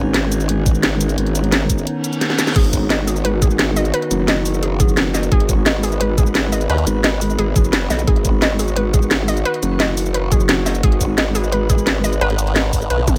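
A straight 4/4 drum and bass groove drives this futuristic, aggressive excerpt of dark technical drum and bass, with a knocking electronic kick under an up-front kit of cracking snare, bright hi-hats, cabasa, crash and toms, re-recorded in a small room, and a background reverse cymbal from 2.0 seconds leading into a drum fill at 2.2 seconds. A saturated, growling bass with chorus and sidechain pumping sits up front beneath an eerie, metallic FM drone that holds sustained chords in its own reverb. From 2.6 seconds a lo-fi, warbling pluck adds dark arpeggios through cassette tape and tape echo, while a formant-sweep wobble bass in pulse wave briefly surfaces and then takes over at 12.2 seconds, all within a digital ambience.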